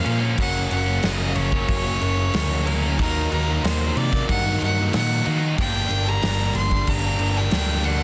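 The recording is dense and heavily limited, with a modern master and little reverb, so the parts sound close and dry. This dark, brooding excerpt of quiet-loud alternative rock moves at 92 BPM in a straight 4/4, set in G harmonic minor with tuning at A4 = 438 Hz. A single bowed fiddle carries the melody with a nasal, earthy edge. A picked, double-tracked overdriven electric guitar plays the riff, and a high-gain distorted guitar also plays the riff from the background. Up front, an overdriven picked electric bass adds a growly, punchy low end, and an acoustic rock kit in a big room brings crash cymbal, kick drum and snare drum. The harmony moves through F# at 0.4 seconds, then Ebm, and arrives on Gm at 5.6 seconds.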